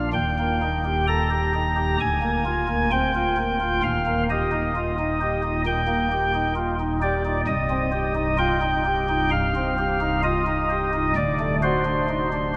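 A soft, chiffy flute-stop pipe organ with tremulant sits up front in a cavernous cathedral reverb, playing a grave, dark classical chorale alone at a rubato 65 BPM in 4/4, its baroque voicing spanning C1 to Bb5 as the harmony moves from Eb through Bb7/D and Cm to a D7 at 11.2 seconds in this 12.6-second excerpt cut from a longer piece.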